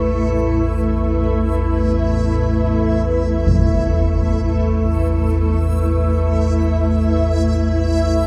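Desolate and ominous, this dark ambient drone in free time, cut from a longer piece, sets a deep, rumbling low drone and a cloudy, blurred granular pad under a faint, reversed high texture that glints brightly, while a muffled concert bass drum sounds once in the background at 3.5 seconds, all held in a huge, long-decaying reverb.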